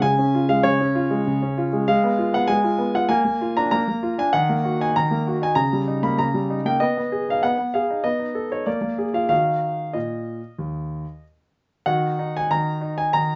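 The recording has a light reverb and a softened top, with nothing above 7.6 kHz. A single grand piano sits up front with a clear, smooth, vintage tone. This is a classical-period sonatina in a serious, restless mood, in straight 4/4 time. The piano spans from Eb2 to Cb6, and its harmony moves through a diminished chord and a chain of dominant sevenths before settling on the minor home chord at 9.3 seconds. A new section begins at 11.9 seconds, shortly before this excerpt, cut from a longer piece, breaks off at 13.4 seconds.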